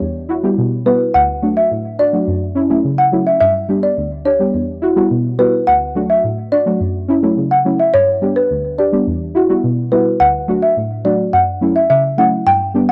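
Dancehall at 106 BPM in a straight 4/4, this excerpt from a longer piece has a sultry, hypnotic mood in F# phrygian. A deep, mellow chord stab starts at 0.0 seconds, a dark, full-bodied synth tone blending triangle, sawtooth and sine waves, detuned and thickened with chorus, with a fast attack, a decaying tail and a filter sweep. At 0.9 seconds a folk marimba played with medium mallets brings the melody, its hardwood bars sounding woody, dry and rustic, with a boxy small-room character. Both parts sit up front, and the chords cycle through Emadd9, D, F#m7 and G before a new section arrives at 10.2 seconds. The recording is dry and gritty, with transformer saturation and a light touch of small-room reverb.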